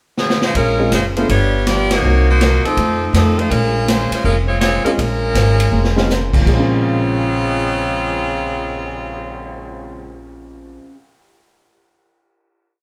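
A drum fill and a bright saxophone section open this short, dramatic big band swing piece in Bb minor at 162 BPM. The saxes sit up front with light vibrato, playing a motif-based melody harmonised in four-part block voicing. Within the first second they are joined by a pizzicato upright bass in a woody, thumpy two-feel, a concert grand piano comping syncopated rootless voicings, and a picked steel-string acoustic guitar strumming jazz chord shapes four to the bar in the background. The kit keeps a ride cymbal pattern and backbeat over a boomy kick, with a band accent at 1.8 seconds and a second fill leading into the final chord at 6.5 seconds, all played live in a reverberant studio room.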